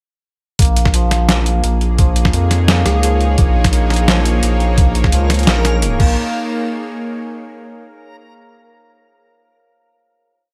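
Dark and spacious, this short half-time drum and bass piece in Bb minor moves at 172 BPM, opening at 0.6 seconds on a drop where a thumpy, gritty pitched-down kick and a tape-warm sampler kit of medium-tuned snare, closed hi-hat and crash carve out a sparse beat beneath deep, thick saturated sub bass in chopped phrases. A hammered santur rings out a shimmering six-step arpeggio loop that drifts against the bar through a diffuse ambient delay, while a tense, string-like bowed drone with vibrato and sidechain pumping holds slowly shifting chords from 1.6 seconds. A crystalline wavetable pluck adds a brief glassy phrase with chorus and delay, and a reversed, dreamy granular texture holds a high note in the background before the drone closes the piece on a final Bb minor chord after a passing Bbsus4.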